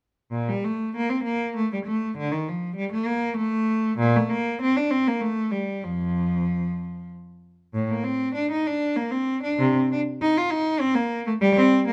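A single bowed cello opens at 0.3 seconds and carries this radiant, flowing baroque-style suite movement alone until 11.9 seconds, moving in a rubato triple metre with uneven beats. Up front and focused, the one player's rich tone carries vibrato and a smooth top across a range from F2 to F4. A moderate studio reverb and a dark, warm production surround this brief cut from a longer piece.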